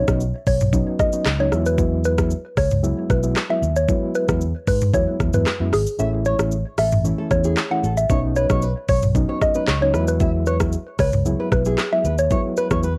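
A straight 4/4 afrobeats groove at 114 BPM in E major drives this breezy, sunny excerpt, where an afro-pop drum kit with a knocking kick, crisp hats, handclaps, rim clicks, shaker and toms sits up front beside an amped fingered electric bass, while soft, round electric-piano-like synth keys with chorus and tremolo support a woody, nasal mallet-like synth pluck melody carrying chorus and analog delay, a fingerpicked, full-bodied nylon-string guitar riff enters at 6.0 s as the kick drops out until 7.0 s, and the whole piece has the light reverb and cassette-tape character of a home recording.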